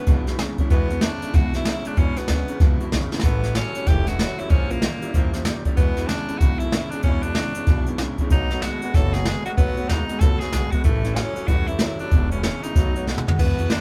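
A raspy, gritty tenor saxophone carries the melody with light vibrato in this rollicking, upbeat rockabilly cut from a longer piece, riding a swung feel over chords that move from E7 through A7 and B7. Up front, a brushed jazz kit with a boomy kick and airy sound adds drum fills at 3.1 and 13.1 seconds. In the background sit a woody, thumpy pizzicato upright bass on gut strings and a full-bodied dreadnought acoustic guitar, while a slightly broken-up electric guitar through a small old amp plays a dark, lo-fi riff, the band performing live together in one room with light reverb.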